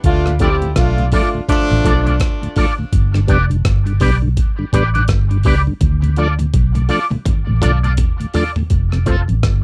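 A foam-muted, round electric bass and a gritty, compressed sampler-style drum kit with a thumpy kick open this laid-back roots reggae excerpt at 83 BPM, swung in 4/4 over Dm, G and F chords. A punchy horn section with light vibrato and tape echo sounds briefly up front until 2.2 seconds, while a mellow tonewheel organ with key click and slow rotary speaker and a bright, twangy envelope-filtered guitar with chorus and tape echo fill in the accompaniment. A drum fill runs from 5.8 to 8.7 seconds, all captured in a dry, close 1970s-style studio sound.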